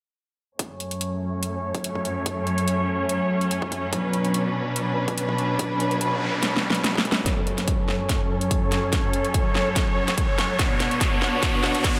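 Chaotic and heavy, this short cut from a longer heavy wobble dubstep piece moves at 144 BPM in a half-time 4/4 with a light swing, set in F# minor. A clear, lush studio string section holds sustained bowed chords with vibrato from 0.6 seconds, cycling between F#m and Bmadd9, its focused ensemble tone shaped by sidechain pumping and a low-pass filter that sweeps across both sections. Beneath it, a punchy electronic kick re-recorded in a large room plays alongside a layered dubstep kit with a huge snare and metallic, tape-tinged hats, and drum fills push the second half forward. From 5.7 seconds a noise sweep and riser sit in the background, building tension through the closing passage after 7.3 seconds. The whole mix is dreamy and soaked in a cathedral reverb with a long 5.1-second tail, giving the up-front strings and drums a vast, hazy halo.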